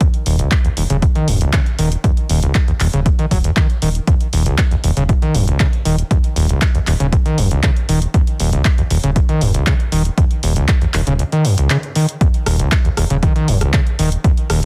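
An overdriven acid bass riff opens this trippy, hypnotic acid house excerpt in straight 4/4, its squelchy, gritty sawtooth tone resonant and distorted, with filter sweeps, a subtle chorus, digital delay and sidechain pumping, and it sits up front in the mix. An electronic kick drum, punchy and overdriven, sits up front alongside it from the start, while a punchy analog drum machine adds overdriven handclaps, hi-hat and rim click beneath. At 0.3 seconds a round analog bass settles deep on a low Eb, a dark, evolving blend of sawtooth and sine with ring modulation, tube saturation and its own sidechain pumping. The kick drops out between 11.2 and 12.2 seconds, leaving the acid riff, drum machine and bass to carry the groove before it returns. The sound is dry, with a dense, heavily limited modern master.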